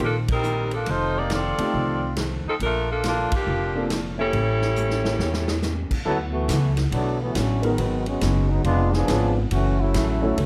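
A swinging big-band excerpt opens at 139 BPM with a clear, tight saxophone section carrying the melody over woody pizzicato upright bass, a very quiet dark hollow-body electric guitar and a natural-sounding drum kit with punchy kick and ride cymbal in a big room. The mood is joyful, with band accents at 0.2 and 3.2 seconds and a mellow, dark grand piano entering at 1.6 seconds. After a drum fill, the saxophones drop out and the music settles into D major at 6.1 seconds, where a smooth-topped trombone section with light vibrato takes a solo, sitting up front like the saxophones before it. The harmony moves through rich jazz chords such as Bbmaj7, A7b9, D69 and C#7b9. Light reverb surrounds the whole band.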